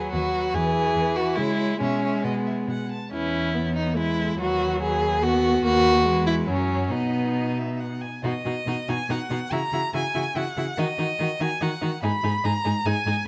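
Moving in a lilting three-beat metre with a flexible, rubato feel, this quick classical-period movement for string quartet sounds lively and graceful, and it is cut from a longer piece. A single bowed first violin carries the melody in a smooth, even line with vibrato. Beneath it, the second violin plays a focused, up-front second line with a warm tone. The viola supplies rich accompaniment, and the cello anchors the bass, sitting close and forward in the blend. The harmony settles onto a new key centre at 5.6 s, and a fresh section begins at 8.2 s, turning toward darker minor chords before the passage breaks off. Close, detailed microphones capture each bowed player clearly within a moderate recital-hall reverb.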